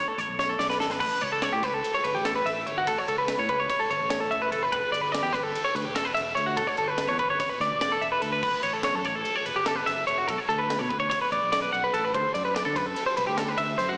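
A bright, twangy twelve-string electric guitar opens this restless, intricate math rock and midwest emo excerpt with clean, compressed picked arpeggios carrying a slapback echo, sitting up front as a fingered electric bass and a crisp fusion drum kit with a high-tuned snare and tight kick enter at 0.2 seconds, the drums playing a quick fill before the main passage begins at 1.0 second. Moving at 291 BPM in eighths in 9/8, the harmony shifts from B7sus2 through A9, Em11, F#m7 and Bm7 to D13, with the bass sitting low and understated beneath the guitar. The whole performance comes across as a live gig heard through the venue's PA, with recital hall reverb, a pumping small-room character on the drums and a small-speaker sound.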